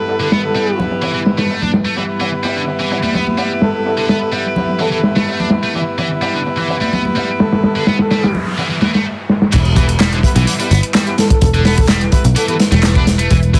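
A crunchy breakbeat drum kit with a tight kick and rolled-off top drives this gritty, funky 127 BPM breakbeat passage in E minor, beneath a scooped high-gain guitar riff with 12-bit sampler grit, clear jazz-style horn stabs, a breathy flute-like synth melody, a moody sidechain-pumped analog pad and distant high-tuned congas, until a noise sweep from 8.1 s leads into a drop at 9.5 s where a round, up-front picked electric bass and the overdriven handclaps and hi-hat of an analog drum machine join, set in a dense, heavily limited master with vinyl crackle.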